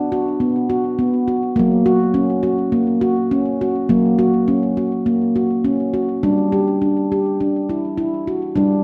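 A solo handpan of nitrided steel rings out close and up front, its full, dry tone played with the fingertips and trailed by a delay, ranging from F#3 to G4 in F# phrygian dominant. This hypnotic, meditative world piece moves at 103 BPM in a straight 4/4, with a dark, warm production set in a wet recital hall reverb, and the harmony passes through B5 and F# before a new section arrives on G5 at 6.2 seconds. It is a short excerpt cut from a longer piece.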